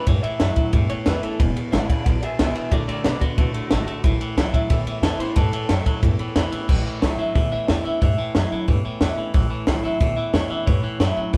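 A straight 4/4 pulse at 181 BPM drives this rowdy, retro rockabilly cut in A mixolydian, moving through A, E and D chords, with a compact cocktail drum kit up front giving a punchy kick, a high-tuned snare and dark, rolled-off cymbals, while a woody upright bass thumps out plucked gut-string lines. A twangy, clean electric guitar plays a low riff, a full-bodied jumbo steel-string acoustic picks out accompaniment in the background, and an electric guitar through a small old amp carries the melody with a bright, slightly broken-up tone and tremolo. At 6.7 s a clean electric guitar solo begins, and the whole band sounds as if playing live together in one room with light reverb.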